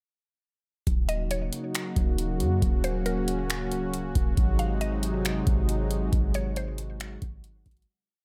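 A booming analog drum machine sets a sparse half-time beat at 137 BPM in 4/4, its deep kick, metallic hats with fast rolls and finger snaps sitting up front with a small-room character, while a clean 808-style bass lays long, sine-like sub notes that follow the kick and slide in pitch. This short, melancholic and ethereal cloud-rap piece in Eb dorian moves from Ebm7 to Ab7 over a smooth, detuned sawtooth pad with chorus and sidechain pumping, and from 1.1 seconds a woody, round mallet-like FM pluck, treated with chorus and tape echo, repeats a sparse looping melody like a sample. Light reverb surrounds the mix, which fades out from 6.1 seconds to its end at 7.9 seconds.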